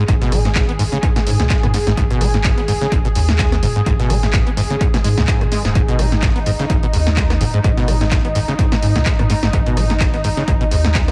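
Acid house with a gritty, driving mood, swung on the sixteenths in 4/4, this clip opens with a squelchy, resonant sawtooth acid bass riff and a lush, detuned unison pad holding sustained chords that pump against the sidechain. A deep triangle sub bass, tube-saturated and sitting in the background, joins at 0.1 seconds with a punchy electronic kick, an analog drum machine playing handclaps, hi-hats, rim clicks, snare and toms through tape echo, and a very quiet, overdriven sampler-style kit adding hi-hat and snare. The acid line carries subtle chorus and analog delay, and the whole mix is echo-heavy with light reverb and a digital ambience.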